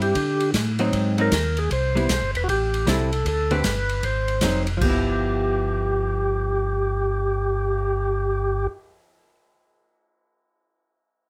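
A greasy, soulful soul jazz organ trio groove opens at once, swinging in four with a percussive tonewheel organ carrying the melody up front, its key click and second-harmonic percussion sounding full and clean through a slow rotary speaker. Beneath it, a second tonewheel organ plays the bass line, mellow, round and dark, colored by chorus vibrato and its own slow rotary speaker. A miked, hollow-body archtop guitar comps with a picked, compressed electric tone that stays clean and shadowy. The acoustic drum kit sounds airy and polished in a small room, with dusky cymbals on ride, hi-hat, crash and a cymbal swell, a medium-tuned snare and a boomy kick. The harmony moves through chords such as D7sus4, Ab7, Cmaj7 and Am7 before a new section lands on G6, all under light reverb. The drums drop out at 7.8 seconds, both organs at 8.7, and the guitar rings on to 9.3 seconds in this fragment of a longer piece.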